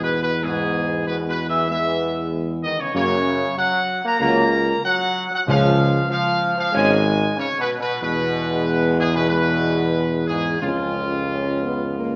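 A warm, vintage-toned trumpet section carries the melody up front in this solemn, majestic classical fanfare, a 12.2-second passage cut from a longer piece at a steady 94 BPM in 4/4. Beneath it, mellow French horns in the background and mellow trombones hold sustained chords with light vibrato and smooth tops, while a distant, roomy tuba anchors the bass over chords moving from E through F# and C#. A close timpani sounds briefly from 5.5 to 6.4 seconds, and the whole brass ensemble sits in the wet reverb of a scoring stage.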